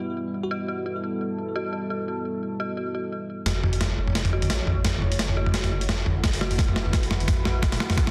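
A swung, half-time drum and bass pulse sets the frame for this cinematic, spacious excerpt from a longer piece. A deep, moody analog pad holds slow-attack sustained chords with a sidechain pump, while a detuned synth bell traces eerie, inharmonic arpeggios through chorus, tremolo, a low-pass filter and delay, and a sparkling FM electric piano flickers briefly in the background with phaser. At 3.5 seconds the harmony shifts from Em to F#m7 as a build-up begins: a soft, saturated wobble bass enters and a gritty, sampler-style boom bap kit plays an up-front drum fill on hi-hat, high-tuned snare and toms. A thumpy electronic kick, re-recorded in a large room like the kit, joins at 6.2 seconds. Light reverb surrounds a dense, heavily limited modern master.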